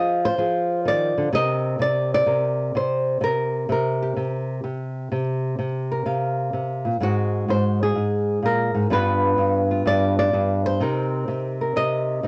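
A home cassette recording with moderate studio reverb gives this short cut from a longer piece a close, intimate sound. It is solo jazz in C minor at 127 BPM in 4/4, with the eighth notes swung for a cool, late-night mood. A single flamenco guitar carries everything, sitting up front with a dark, acoustic, fingerpicked tone and the cassette tape character colouring its sound. Its range runs from G2 to F5, covering low bass notes through to bright upper lines. The harmony opens on Fm7, moves to C7 at 1.3 seconds and Ab7 at 7.0 seconds, then G7 at 8.9 seconds, before settling on Cm7 at 10.8 seconds as the passage ends at 12.3 seconds.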